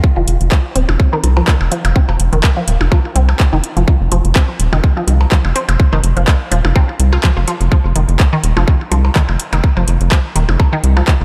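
This cool, sparse minimal techno excerpt opens on a tight, layered electronic kick placed up front. A rubbery, hollow square-wave bass and a resonant blip pluck join almost at once over an F5 chord. The tempo sits at 125 BPM in 4/4 with a 55% swing on the sixteenths, tuned to A4 = 445 Hz. The dark, bouncy bass stays up front and pumps with sidechain, while the squelchy, detuned sawtooth pluck carries the riff through ring modulation, phaser, delay and the same pumping. A booming analog drum machine adds overdriven handclaps and metallic hi-hats from 0.3 seconds, and delayed percussion blips enter at 0.9 seconds, set in a larger room. Light reverb frames this cut from a longer piece.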